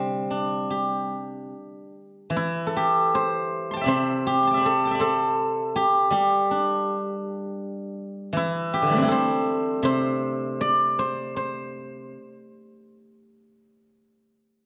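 Loose and rubato, the pulse drifts around 74 to 82 BPM in 4/4, so the music breathes freely rather than keeping strict time. This is a fragment of a longer traditional Chinese piece for solo plucked strings, serene and pastoral in mood, set in C gong mode with tuning pitched to A4 = 443 Hz. A single acoustic steel-string zither, played with fingerpicks, carries everything from 0.0 to 13.7 seconds, ranging from C3 up to C6. Its tone is silvery and ringing, sitting up front in a dark production. A moderate recital-hall reverb lets the notes bloom in the space, and a new section begins at 2.3 seconds, continuing to the close.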